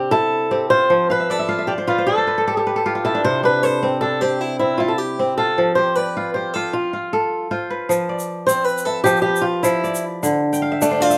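This West African traditional piece for strings and xylophone moves at 103 BPM in a hypnotic 12/8, sitting in F lydian. A fingerpicked, swing-style acoustic guitar carries the melody up front, its boxy tone marked by audible finger squeak, while a crisp, ringing kora spins fingerpicked arpeggios across a broad register alongside it, adding a fill early on between 1.1 and 3.2 seconds. At 7.9 seconds the music shifts into a new section and a grainy, bright egg shaker enters close to the ear. The harmony rocks between C and F before settling on F5 and D5 chords. The players share one room with moderate studio reverb, giving the take a warm, live feel, and the recording is cut from a longer piece.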